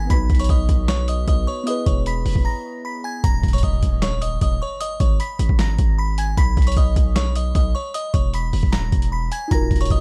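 A half-time trap beat of gritty, pitched-down sampler-style drums with a thumpy kick, snare, handclaps and hi-hat sits up front beside a distorted, aggressive 808-style bass, while a delicate, tinkling FM tine bell carries the eerie, brooding hip hop melody through chorus and delay, muted felt-like synth keys add mellow accompaniment until 3.3 s and return at 9.5 s, and a very quiet electronic impact arrives at 3.4 s in this dark, dry production.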